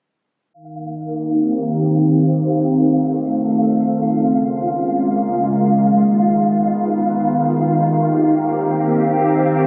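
Heard through a phone in a lush hall with a muffled, low-passed, compressed sheen, this glitchy, melancholic IDM fragment at 138 BPM in C phrygian sets a silky, vintage string machine up front, its slow-blooming chords of Cm7, F7, Db6 and Abm6 colored by phaser and ensemble chorus, beneath a quieter pulsing, tempo-synced texture of detuned triangle tones on a high F, while a filter sweep runs from 0.5 to 9.7 seconds.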